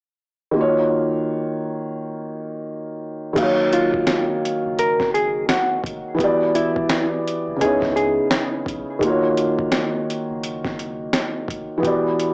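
Recorded as if on a home cassette and heard through a small speaker, this melancholic, nostalgic lo-fi hip hop excerpt opens with a soft, muted upright piano placed up front, its action noise audible and its tone filtered and tape-worn. At 3.4 seconds a gritty, compressed sampler-style drum kit with a thumpy kick and fat snare arrives, joined by a round, deep sub bass sitting in the background, while swung sixteenths give the groove a loose lilt. A dark, clean hollow-body electric guitar carries a brief fingered melody from 3.7 to 8.3 seconds over hazy minor ninth chords.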